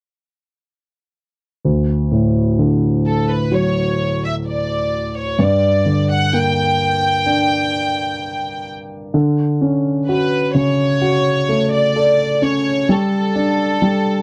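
This is a tender, heartfelt pop instrumental in D major, moving at a slow 64 BPM in a straight 4/4 and tuned slightly high to A4 = 441 Hz. A concert grand piano opens the passage at 1.6 seconds, carrying the accompaniment up front with a deep bass that reaches down low in its range. At 3.1 seconds a studio violin section enters with the melody, its bowed ensemble tone pure and floating, with a soft attack that lets each note bloom gently over the piano. The harmony moves from D to G minor, then shifts at 9.1 seconds to a Dmaj7 before settling on Gsus2, giving the second half a more open, yearning colour. The sound is dry and close in the manner of a 1970s studio, with only a light reverb around the two up-front parts, and the excerpt is cut from a longer piece.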